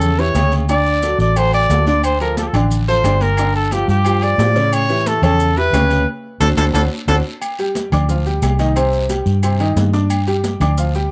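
A fiery, danceable salsa excerpt opens with a clear, punchy trumpet melody up front over brilliant upright piano, a dark, round muted electric bass, high-tuned hard-hand congas, raspy guiro and grainy maracas, with ringing metal-shell timbales and agogo bells joining at 0.4 seconds and woody, distant claves at 2.0 seconds, and a band accent hits at 6.1 seconds before the trumpet drops out and the piano, bass and percussion carry on, all in a tight booth with a vintage home-cassette sound and plate reverb on the trumpet and piano.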